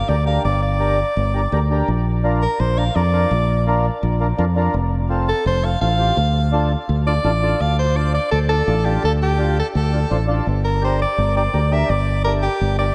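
A bright soprano saxophone with light vibrato and tape echo carries a pop-style solo through the first 7.6 seconds of this fiery, danceable cumbia fragment, backed by a reedy, mellow accordion and a dark, round fingered electric bass sitting up front, in a dreamy mix soaked in lush hall reverb.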